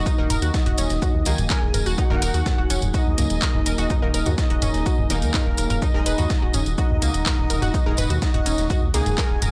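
A melancholic, dramatic melodic techno excerpt in Eb minor at 125 BPM opens with a smooth, gliding portamento lead carrying the melody over an airy, tape-tinged supersaw line, a morphing, warbling wavetable pad in the background, detuned analog pluck arpeggios, bright brassy stabs and a round, deep analog bass, all pumping to the sidechain as the chords move from Ebm to Abm7/Eb at 5.8 seconds. From 0.1 seconds a punchy electronic kick leads the drums, joined by a house kit's handclaps, hats and toms, a very quiet, gritty breakbeat sampler kit with hi-hat, shaker and snare, and a jingly, distant tambourine. The whole sits in a dry, gritty hardware recording with a digital ambience.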